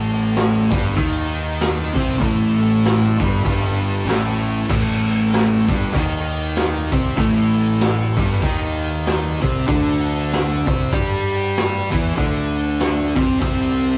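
A swung 4/4 groove at 96 BPM drives this brooding, hypnotic stoner and doom metal excerpt, played by a band live in one room with light reverb. Two picked, distorted fuzz guitars carry the riff, a dark one up front and a warm one sitting in the background, over a bright, growly, overdriven fingered bass and a raw garage kit with a boomy kick, medium-tuned snare, hi-hat and crash, its gritty, saturated sound rolled off at the top. The harmony rests on Am7b5/G before shifting to Cadd9 at 9.7 seconds.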